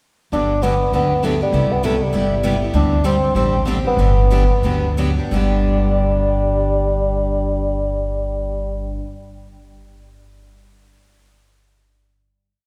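Acoustic string swing in the jazz manouche style, this short, complete piece is lively and swinging, carried by a mellow bassoon that plays a classical-style, motif-based melody in period phrases with light vibrato. Beneath it, a bright, fresh-stringed picked steel-string guitar plays four-to-the-bar rhythm, its chords short and accented on two and four, with audible finger squeak. A second picked steel-string guitar adds a boxy, parlour-toned rhythm part, sitting lower in the mix. The upright bass, plucked on gut strings, is woody and thumpy and sits up front, playing a two-beat root-and-fifth line. The tune slows from 2.7 s and settles at 5.3 s onto a held final chord, and the whole ensemble rings in a wet church reverb with a long, spacious tail.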